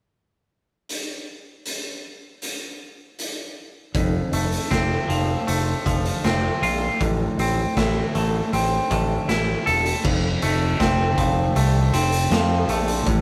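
A straight 4/4 pulse at 79 BPM drives this dark, brooding excerpt of quiet-loud alternative rock, opening with a raw garage drum kit alone at 0.9 seconds, its punchy kick, medium-tuned snare, hi-hat and crash cymbal set up front in a bright stone room that pumps around them. The kit sounds saturated and gritty with a rolled-off top. At 3.9 seconds a growling fingered electric bass joins, direct and amped with overdrive, ranging from E1 to F2. A twangy electric guitar follows at 4.0 seconds with clean, bright picked arpeggios between F2 and A4, as the harmony settles on F, moves to Am at 7.0 seconds and returns to F at 10.0 seconds. The rough rehearsal-room recording carries moderate studio reverb and a saturated glow, keeping all three parts close and immediate.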